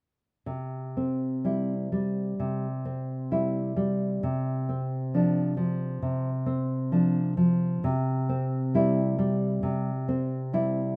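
A nylon-string guitar enters at 0.5 seconds in a lyrical, tender classical passage in C major, moving at a slow, rubato 66 BPM in 4/4. Its dark, full-bodied tone sits up front in the low-to-middle register, thumb-plucked as accompaniment over chords that move from C to Dm7/C and back to C. Light reverb and a small-room ambience give this brief extract the rough, intimate character of a home demo.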